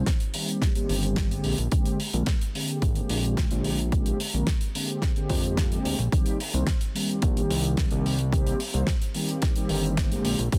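Sensual and groovy, this nu-disco cut from a longer piece moves at 109 BPM in C minor, with a round, detuned synth brass carrying a filter sweep, chorus, vibrato, slapback echo and sidechain pumping over Cm7 and Bb13 chords, while a thick, saturated sawtooth bass holds the low end, a dry 70s kit supplies airy hi-hat and a fat snare, and a punchy, tape-tinged electronic kick sits up front in a dense, heavily limited modern mix with studio reverb.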